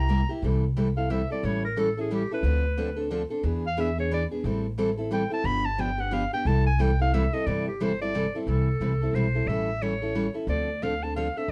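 Playful and charming, this short excerpt cut from a longer acoustic string swing piece moves at a brisk 179 BPM in 3/4, with a swung eighth-note feel in C major. A breathy clarinet carries the melody with a subtone, light vibrato and a bright, present jazz voice, taking a solo from 0.4 to 8.5 seconds before the music moves into a new section. Beneath it, a picked steel-string acoustic guitar supplies bright accompaniment, while a pizzicato upright bass adds a woody, thumpy low end, all three parts sitting up front. The harmony cycles through C6, A7, Dm7, E7, Am7 and G7 before returning to C6, A7 and Dm7. Moderate studio reverb and a dark, warm production frame the small ensemble.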